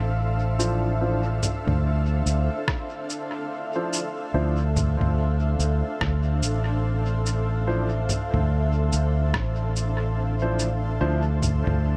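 A blurred, detuned granular cloud pad holding a Dm9 chord and a growly, amped fingered electric bass sitting up front open this spacious, meditative ambient dub excerpt at 72 BPM in D minor with a swung sixteenth feel, joined at 0.6 s by woody upright piano stabs under a filter sweep and dub echo alongside muffled, pitched-down, sampler-style electronic cabasa, congas and rim click, while a soft, tape-warm electronic kick drum enters at 2.7 s and stops at 9.5 s, the whole mix sitting in a light digital ambience.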